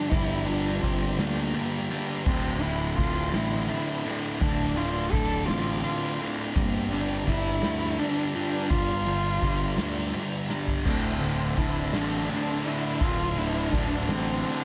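Post-rock in D minor at a slow 56 BPM in 6/8, this brooding, cinematic piece sets a veiled, con sordino cello melody with slapback echo over a sludgy overdriven guitar riff up front, punchy fuzz-laden fingered bass, a soft-mallet drum kit with boomy kick and dark cymbals, ringing handpan arpeggios played very quietly with soft fingertips, and a very quiet, biting symphonic string section holding sustained chords, all in light reverb, until a drum fill at 10.5 seconds brings in a bright, scooped distorted guitar riff in the background at 10.9 seconds.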